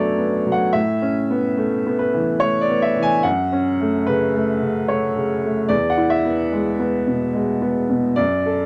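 Wistful and reflective, this short excerpt of neoclassical minimalist piano unfolds at 73 BPM in 3/4 with a rubato feel, tuned slightly low to A4 = 439 Hz. A clear upright piano plays alone from 0.0 to 8.7 seconds, spanning E2 to G#5 with a woody, smooth, vintage tone and long sustain. The harmony moves from D6/F# to Aadd9, then settles on F#m at 3.2 seconds before arriving at E at 5.7 seconds. The piano sits up front in a dry, close 1970s-style studio sound, touched by light reverb. Cut from a longer piece, the passage feels like a wistful reflection caught mid-thought.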